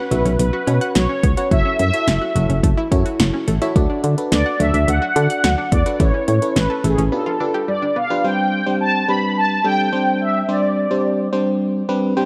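An upbeat, nostalgic synth-pop excerpt at 107 BPM in 4/4 opens with a mellow synth brass lead carrying the melody. The lead is brassy and detuned, with chorus and phaser. Beneath it, a glassy, bell-like FM electric piano plays accompaniment and a round analog pluck plays chorused arpeggios. A digital FM bass and a deep house drum kit drive the groove until a break at 7.1 seconds; the kit has a deep kick, punchy snare and metallic hats, overdriven and up front. The harmony moves from Bsus2 through F#m7, D and Aadd9 to G7, then settles on Csus2 at 8.2 seconds as the pluck drops out, and the electric piano adds a short fill before the cut at 12.3 seconds. A lush hall reverb wraps the dark, warm production.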